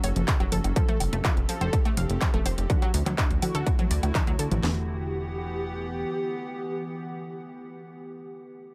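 A straight 4/4 pulse at 124 BPM drives this dark, melancholic melodic techno excerpt, which opens on a drop as two layered electronic drum kits come in, the second joining at 0.3 s. That later kit carries a distorted kick, a cracking snare and handclaps, overdriven and up front. The other adds congas, handclaps, hi-hat and woodblock, with its hats and percussion pumping against the sidechain. A punchy, funky analog bass with a sawtooth and square-wave filter pluck sits up front, pumping in the low register until 6.0 s. Above it, a lush, detuned unison pluck plays bright arpeggios with a noise layer and dub echo, while an evolving wavetable pad holds morphing, warbling chords through chorus and built-in reverb. From 0.8 s a mellow, brassy synth lead sits in the background, round and dark with vibrato and tape echo, as the harmony moves from F#m through F and D to Em; once the drums and pluck fall away, the bass and then the pad and brass carry the second section.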